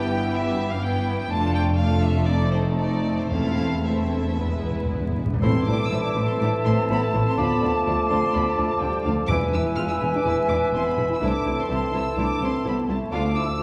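A stormy, restless classical-period symphonic movement in A minor at a quick 124 BPM with a rubato feel, where veiled con sordino violins carry the melody over a second muted violin line, dark violas, mellow French horn chords and bowed cellos and double basses in the bass. Hard-mallet timpani enter at 3.3 s and add a crisp fill from 4.4 s, and at 5.4 s an airy silver flute, a distant clarinet, a vintage-toned cor anglais and a soft bassoon join, all set back in a reverberant recital hall with vinyl crackle.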